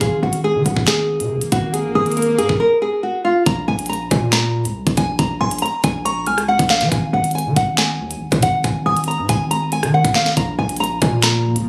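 Tense and dark, this half-time drill hip hop excerpt puts a small, fingerpicked nylon-string guitar melody up front over a punchy, heavy 808-style bass and an electronic drum kit with a knocking kick, sharp snare, crisp hats, rim clicks and finger snaps. An electronic swell appears early on, and a delicate, tinkling FM tine bell with chorus, phaser and delay warbles in briefly, then returns from 5.4 s to 9.1 s. Near the close, a blurred, granular cloud pad joins in the background at 10.7 s, while light reverb and the room ambience of a phone recording colour the sound.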